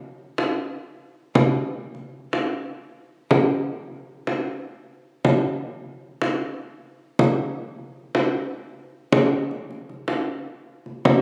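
The rhythm moves in a straight 5/4 at 154 BPM, giving this contemporary instrumental fragment a restless pulse that never quite settles. A lone frame drum carries the whole passage, entering at 0.4 s and playing until 11.2 s, its small, bright acoustic voice sitting up front. A recital-hall reverb with a 1.5-second tail surrounds the drum, lending it a shimmering halo that lingers between strokes. The sound has the immediacy of a phone held in the room, with added studio reverb and compression tightening the overall picture. Cut from a longer piece, this single section feels like a brief, nervous glimpse into something larger.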